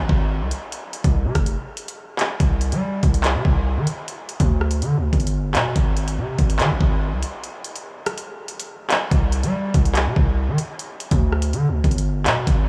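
A distorted 808-style bass opens this dark, tense half-time drill cut, its heavy, saturated tone carrying a noise layer and a fast attack that decays, sitting up front. Almost at once an electronic drill kit joins with a knocking kick, bright hi-hats, handclaps and rim clicks, also placed close and forward in a small room with light digital reverb. Breaks arrive at 1.6 and 7.4 seconds before the arrangement moves into a new section at 9.1 seconds, and the clip stops as if cut from a longer piece.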